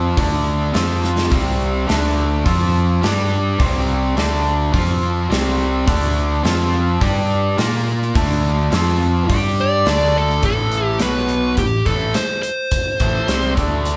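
A straight 4/4 pulse at 105 BPM drives this aggressive hard rock clip in A minor, with a gated 80s drum kit entering at 0.2 seconds with a punchy kick, medium-tuned snare and hi-hat, adding a fill at 1.0 seconds, while a growly picked electric bass holds the low end. Up front, a cranked, double-tracked stack guitar with bright overdrive plays a power-chord riff through the whole passage, and a dark, smooth overdriven lead guitar adds a melody from 9.6 to 13.5 seconds, carrying over as the music moves into a new section at 10.4 seconds. The band sounds like it is playing live together in a polished, airy stone room with moderate reverb.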